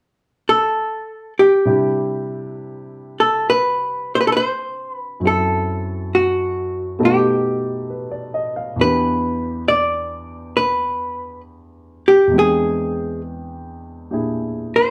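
A clean, compressed hollow-body archtop guitar carries the melody from 0.5 s, its picked electric tone setting an intimate, tender mood in this slow, gently swung jazz ballad at 67 BPM in C major. A warm, natural grand piano with short sustain joins at 1.7 s as accompaniment, sitting up front alongside the guitar through C, F#m7b5, Baug7, Em7 and E7alt harmonies. The band plays live in one room with moderate studio reverb, in a passage cut from a longer piece.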